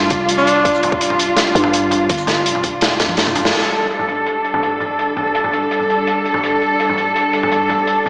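A dark, woody cello section holds sustained chords over a growling 808-style bass and a crunchy, gritty breakbeat kit with a tight layered electronic kick in this cinematic, spacious half-time drum and bass, where a clear alto saxophone with tape echo sounds a brief scooped note at 0.4 seconds. The kick drops out during a drum fill near 3.0 seconds, the bass falls away at 3.5 seconds, and the whole dreamy, reverb-soaked mix has a small-speaker sound.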